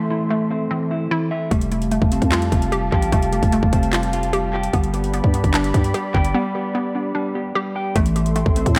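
A clean, dark electric guitar opens this eerie, melancholic trap excerpt in A minor, sitting up front over a deep, moody sawtooth pad with slow attack and long release and a hollow, bouncy square-wave pluck playing detuned arpeggios through chorus, filter and analog delay. At 1.5 seconds a growling, buzzy 808-style bass and an electronic trap kit arrive at 149 BPM in a half-time feel, the kit's hard-clipped kick, metallic hi-hats and handclaps pushed forward with a touch of analog delay. The chords move from Am to Fadd9 and then G at 4.7 seconds, all wrapped in a lightly reverberant, echo-heavy mix.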